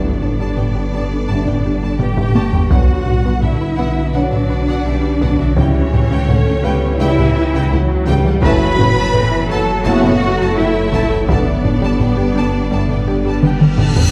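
A tense, futuristic hybrid orchestral and electronic film-score cue at 84 BPM opens with glassy FM pad chords shimmering through chorus and tremolo, a deep, punchy sub bass, woody cellos, smooth background violas, mellow French horns and trombones, lush, intense violins on a second line, and a faint intimate grand piano. It is soon joined by further violins carrying the melody, a tight, driving sequenced synth arpeggio, rich double basses, and heavy, band-limited taiko drums with fills near 2.0 and 13.4 seconds. Everything is set back on a wet scoring stage as the harmony moves from Gadd9 through Bm, C#dim and F#m7 toward a huge, bright reverse cymbal at 13.5 seconds in this cut from a longer piece.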